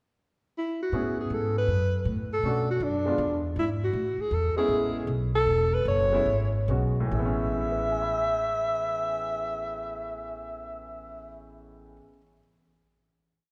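A wet concert-hall reverb surrounds this short, complete jazz piece in small-group swing and bop style, relaxed and warm in mood, swinging in 4/4 in A major at 137-160 BPM before slowing from 3.9 to 7.1 seconds into a final chord. A dark, smooth-topped alto saxophone takes the solo melody from 0.6 seconds, built on hook-like motifs with vibrato and scooped notes, while a present grand piano comps in syncopated rootless voicings over chords such as Amaj9, F#m, Bm9 and E. An up-front, woody upright bass walks underneath in pizzicato, and the piano rings on last, to 12.4 seconds.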